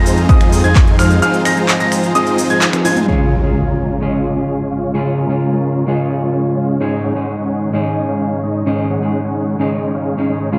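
Dark, warm production fills a moderate digital room, giving this anthemic, triumphant festival progressive house passage a polished sense of scale. It opens mid-drop on Fm7, with a huge, dense supersaw riff up front, treated with dub echo and a low-pass filter. Beneath it sit a lush, airy pad with chorus and phaser, a clean, fingered electric guitar in accompaniment, and a clear grand piano playing high arpeggios roughened by vintage sampler grit, all of them pumping to the sidechain. A punchy, overdriven electronic kick and a layered dance kit of crisp hats, handclaps, finger snaps, cabasa and toms drive the groove, while a thick, detuned saw bass drops away at 1.2 s as a break begins. A band accent and a drum fill lead into an electronic impact at 3.1 s, where the piano stops and the harmony moves to Db. From there a filter sweep runs through the pad, and the chords settle on Absus4 at 6.8 s.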